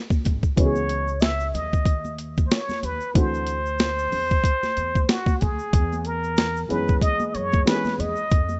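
A swung boom bap groove of gritty, pitched-down sampled drums with a thumpy kick and high-tuned snare anchors this smooth jazz-hop excerpt, joined by bright congas and tube shaker in the background, a woody pizzicato upright bass on gut strings, a dark, slightly detuned upright piano with audible action noise moving through C#m7, D9 and E6, and an up-front plunger-muted trumpet soloing with wah-wah, light vibrato and scooped notes, set in a dry, rough home-demo mix.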